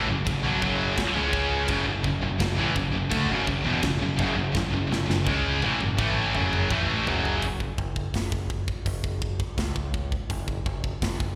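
Heard through a live venue's PA with light recital-hall reverb, this heavy, relentless heavy metal excerpt in F# minor moves at 84 BPM in a straight 4/4. Three bright, high-gain electric guitars play distorted riffs with slapback echo: one sits up front, and two sit in the background, one of them double-tracked. A growling, overdriven electric bass sits up front, and a tight, polished, airy acoustic kit enters at 0.3 seconds with bright cymbals and a medium-tuned snare, playing a fill from 4.6 seconds until the guitars stop at 7.4 seconds, after which bass and drums carry on alone over an F#5 chord.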